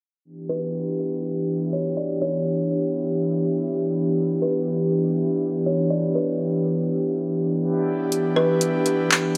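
An airy, breathy pad opens at 0.2 s, holding a sustained Em7 chord with a chorus shimmer up front in this spacious, melancholic piece of atmospheric cloud-rap in E dorian. From 0.5 s a woody kalimba carries the melody, its ringing plucks softened by a low-pass filter and echoed by digital delay in a boxy small-room tone. Underneath, a very quiet reversed texture swells slowly, detuned, granular and dreamy, while a filter sweep runs through most of the opening stretch. At 8.1 s a smooth, overdriven R&B drum kit arrives up front with handclaps and warm hi-hats, settling into a half-time feel against the 122 BPM pulse. A wet plate reverb and a bright 1980s-style digital sheen frame this short extract cut from a longer piece.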